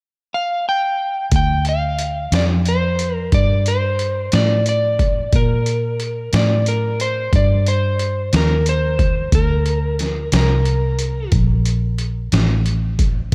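An electric slide guitar opens this smoky, brooding slow blues excerpt in 12/8 with a slightly broken-up melody, joined at 1.3 seconds by a dark, foam-muted vintage fingered bass on a Gm7 and a gritty, pitched-down trip hop sampler-style drum kit with a thumpy kick and overdrive, all set up front in light reverb.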